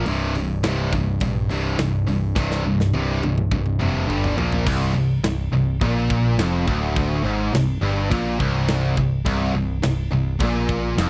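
A straight, steady 4/4 pulse drives this relentless, heavy metal excerpt, cut from a longer piece. Two high-gain distorted electric guitars play the picked riff from the start, one sitting up front and the other adding its own bright edge. Beneath them, a picked electric bass gives a growly, direct-and-amped low end. A tight acoustic kit with bright cymbals, a medium-tuned snare, a firm kick and toms plays throughout, and a drum fill runs from 2.4 seconds into the second section at 4.7 seconds. The opening section moves from C5 through G5 to Bb5, and as the second section returns to C5, a double-tracked, overdriven guitar with a mellower tone joins the riff in the background, thickening the sound. The recording is dry and close, with little reverb and a 1970s studio character.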